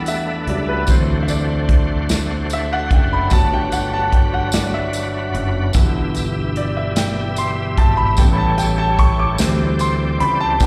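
A clear, intimate baby grand piano with audible action noise takes the solo from the first moment over sustained chords from a bright, lightly overdriven tonewheel organ with key click and slow rotary speaker and a growly, up-front fingered electric bass, while a punchy, airy country drum kit and a jingly tambourine join at 0.1 seconds in this hopeful, uplifting slow gospel excerpt in G major at 49 BPM in 6/8, heard as a live gig through the venue's PA with recital hall reverb as it moves from Em7 through Gmaj7 and G69 to a closing D9sus4.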